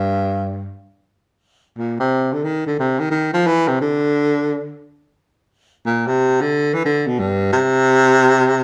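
In free time, this relaxed jazz fragment from a longer piece features a lone baritone saxophone, up front and intimate, moving between G2 and F3 with a breathy, whispered subtone, soft attacks, scooped notes and mellow vibrato across its 8.6 seconds, all heard live in the wet reverb of a large studio room.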